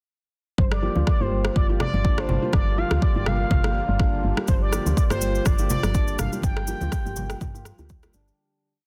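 At 0.6 s this short, driving and spiritual afro house piece in G minor at 123 BPM opens on a Gm7 groove with a swung feel: an overdriven, up-front electronic kick drum on four-on-the-floor, an overdriven electronic rim click arriving a moment later, interlocking ringing congas in the background, and a woody, round FM bass in a dotted rhythm with tube saturation and sidechain pumping. Above it a sawtooth synth lead with chorus, vibrato, delay and a resonant filter sweep sings motif-based call phrases, while a very quiet, warbling detuned analog pad holds chords, a meditative nitrided-steel handpan repeats a 16-step arpeggio through a low-pass filter and delay, and a felt-muted upright piano with audible action noise adds close-voiced dotted stabs. A grainy, bright cabasa joins in sixteenths at 4.5 s, shortly before the fade-out begins at 5.8 s under light small-room reverb and a dense, heavily limited master.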